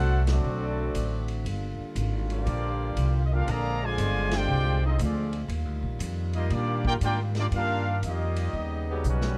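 A rough home-demo mix with studio reverb carries this energetic, brassy big band swing, where a smooth-topped trumpet section sings the melody up front over a woody, thumpy pizzicato upright bass; a dark, roomy trombone section plays a second line and a mellow trombone section with vibrato holds sustained chords in the distant background; a vintage drum kit with a punchy kick and a rolled-off top enters at 0.3 seconds; and after a band accent at 0.2 seconds, a drum fill arrives at 9.0 seconds to close this passage cut from a longer piece.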